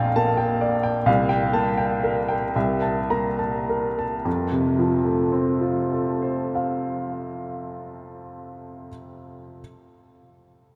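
Hopeful and passionate, this short excerpt from a romantic classical character piece for solo piano unfolds in a rubato 6/8 at a slow 33-46 BPM in dotted quarters, set in F major and tuned to A4 = 442 Hz. A clear upright piano carries everything alone from 0.0 to 9.6 seconds, ranging from Bb1 to Bb5, its woody, intimate tone sitting up front with audible action noise that lends a natural, close-at-hand quality. The first section slows down as the harmony moves from Bb6 through C7sus4 to C6, before resolving onto F at 4.3 seconds, where a second section begins. Around the instrument, a wet cathedral reverb with a 6.3-second decay places the piano in a vast, echoing space, so each phrase hangs in the air long after it is played.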